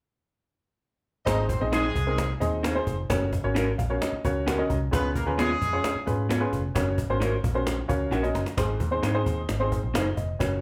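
A short drum fill opens this uplifting, warm slice of uptempo 1960s-style soul in Ab mixolydian, moving at 131 BPM in a straight 4/4 and tuned slightly sharp to A4 = 444 Hz. At 1.3 s the band arrives on an Ab chord: a worn, woody, slightly detuned upright piano sits up front in the accompaniment, a round, foam-muted vintage electric bass holds down the low end, and a snappy cajon with snares keeps time under soft hands. A loose jazz-style horn section carries a second line with light vibrato, a smooth top and octave doubling, also placed up front, before dropping out at 6.0 s. From 1.7 s an electric guitar through a small old amp adds slightly broken-up, lo-fi, compressed stabs, while the harmony moves through Gb and Db7 and back to Gb. The piano offers fills around 3.6 s and again just before another drum fill, which leads the band home to Ab at 8.6 s. Everyone plays live in one room with a moderate large-studio reverb.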